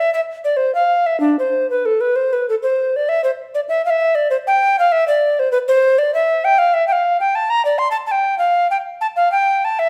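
A tenor recorder carries this short cut from a baroque-style classical fantasia on its own, playing from 0.0 to 9.9 seconds with an airy, woody voice and a straight tone. Each tongued note begins with a touch of chiff, and the close placement keeps the instrument up front. Set in C major at 98 BPM in 3/4, the line moves with a rubato feel that sounds flowing and dance-like. The melody ranges from D4 up to C6, giving the solo part plenty of room to roam. A moderate recital hall reverb, lasting about 1.3 seconds, gives the playing a natural sense of space.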